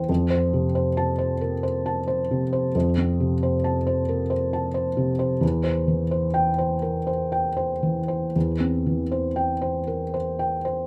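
A felt-muted upright piano carries this short cut from a longer neoclassical minimalist piece, its tone soft and dark, with the thick felt and audible action noise placing it up front in an intimate space. Playing solo across the full 10.9 seconds, it ranges from E2 to A5 in F major, tuned slightly low to A4 = 437 Hz. The mood is tender and hopeful, moving in a slow, rubato 6/8 at roughly 38-46 BPM counted in dotted quarters. The harmony rests on F before shifting to C/E at 5.4 seconds. Light reverb adds a faint sense of room around the mellow tone.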